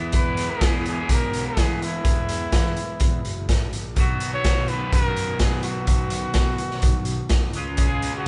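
A raw garage drum kit sits up front in this short indie rock excerpt, its punchy kick, medium-tuned snare and hi-hat sounding saturated and gritty in a small, pumping room with a rolled-off top. Over it a breathy trumpet carries the melody, mellow and whispered, with a soft attack, vibrato and an intimate, present pop-style delivery. An overdriven electric guitar, bright, picked, compressed and double-tracked, plays the riff, while a fuzz-laden, overdriven picked electric bass adds a round, punchy low end. The mood is wistful and jangly, with a straight feel in 4/4, and the chords move from E to B at 4.0 seconds and then to C# at 7.5 seconds. The band plays live together in one room with light reverb.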